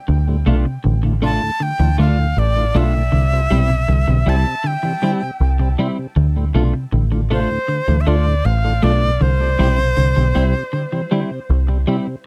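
A dry, close 1970s-style studio sound frames this excerpt of uplifting reggae at 79 BPM in C major, cycling between Dm and C. A dark, round, foam-muted picked bass sits up front while a hollow-body semi-hollow guitar plays arpeggios in the background, joined by a twangy, compressed clean guitar with analog chorus and tape echo, and a lightly overdriven tonewheel organ with key click, vibrato and a stopped rotary speaker. From 1.2 s a breathy, reedy jazz flute with lifted highs and tape echo carries the melody.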